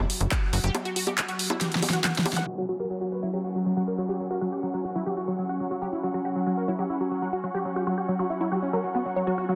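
The supersaw stab stands out most, carrying a punchy, airy, detuned melody from 2.5 s that sits up front with phaser, dub echo and sidechain pumping. This is a psychedelic, hypnotic psychedelic trance excerpt at 139 BPM in straight 4/4, opening on an F#5 chord. A tight, nasal sequencer bass drives briefly at the start, while an overdriven big-room dance drum kit with a huge layered snare, bongos, handclaps, hi-hat and crash plays up front until 2.6 s, closing with a drum fill from 1.6 s. Underneath, a mellow, morphing wavetable pad holds sustained chords with chorus and its own reverb, and a lush detuned unison pluck riff plays through cassette tape coloring and tape echo. From 2.5 s the music moves into a new section where a bright, intense studio string section adds a close, bowed texture with vibrato and a filter sweep runs to the end, while electronic zaps and a downlifter, entering at 2.4 s, flicker in the background. 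The mix is dense and heavily limited, set in a moderate lush hall reverb with a low-pass filter on the master.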